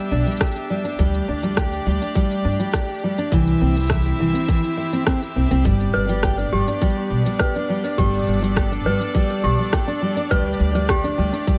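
A dark, full-bodied fingerpicked steel-string acoustic guitar sits up front with delay on its arpeggios in this playful, hopeful folktronica excerpt, over a woody pizzicato upright bass, a tight electronic kick drum and an electronic shaker and rim click in studio reverb, and the distant, biting sustained chords of a bowed string quartet roughened by vintage 12-bit sampler grit, while a clanky, bell-like, slightly out-of-tune toy piano with delay adds a second line from 5.9 s.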